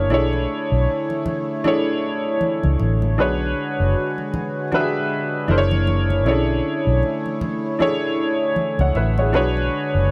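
A woody, slightly detuned upright piano with plate reverb and a round, foam-muted electric bass sit up front from the start of this sultry, smooth neo-soul and R&B fragment at 78 BPM in B dorian, with a lightly swung 16th feel. Beneath them, a shimmering, retro pulse-width pad holds slow-attack chorused chords, while soft-handed, low-tuned congas stay in the background from 0.1 to 9.7 seconds. The harmony moves from Bm11 through E9 and F#7b13 back to Bm11, settling on Bm69 at 9.3 seconds.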